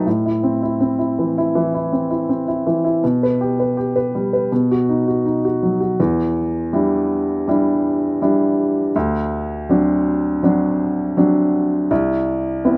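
A warm, up-front grand piano plays alone through this heartbroken, reflective folk excerpt at 81 BPM in a straight 4/4, moving from Am through G/B and B before settling into E minor at 6.0 s with Em7, D7 and Cmaj7 chords, all under light reverb in a rough home demo mix that is cut from a longer piece.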